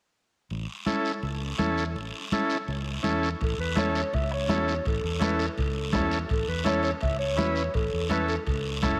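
A sunny, danceable cumbia groove, cut from a longer piece, opens at 0.5 seconds with a fingered electric bass, its tone warm and amped, alongside bright, damped congas played with hard hands in the background and a raspy guiro heard close and dry. A vintage, buzzy combo organ joins just after, up front with a light vibrato and a cassette-tape character. At 3.4 seconds the second section begins: a soft-beater bombo adds its dry thump, and very quiet timbales ring from a distance, as though from a large room. At the same point a mellow clarinet takes the melody as a smooth-topped solo in classical style, sharing that cassette coloring with the organ. The whole homemade cassette recording sits in a moderate, lush hall reverb that gives the ensemble a spacious glow.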